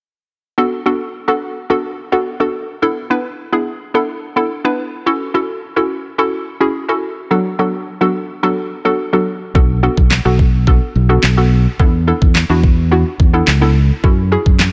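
Light reverb and a digital ambience frame this short, confident yet bittersweet dance-pop excerpt in B dorian at 107 BPM, where a hollow, bouncy square-wave pluck with chorus and sidechain pumping carries the chords alone from 0.6 seconds, its detuned, warbling, vintage tone cycling through Bm7, E7sus4, F#m7 and D6/F#. At 9.6 seconds a round, punchy fingered electric bass, also pumping, and a smooth R&B drum kit enter up front together. The kit brings a knocking kick, a fat, tape-warm snare and handclaps alongside the pluck until the cut at 14.7 seconds.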